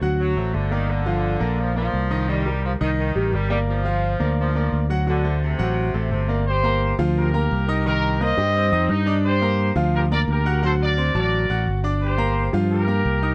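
The excerpt opens with a bright grand piano and a fingered electric bass, joined almost at once by a saxophone section, setting a danceable, passionate Latin groove in G minor at a brisk 173 BPM in straight 4/4. The piano carries the accompaniment with a brilliant, polished tone, long sustain and audible action noise that gives it an intimate presence. Beneath it, the bass sits up front with a round, amped sound, anchoring a cycle of D7, Gm7 and Cm7 chords. The saxophones supply a vintage, pop-style second line until about 6.4 seconds, and a punchy, tight trumpet section then enters with the melody, played with vibrato. The saxophones return only briefly around 8.6 seconds, while the trumpets stay prominent through to the end at 13.3 seconds, all set in a light reverb.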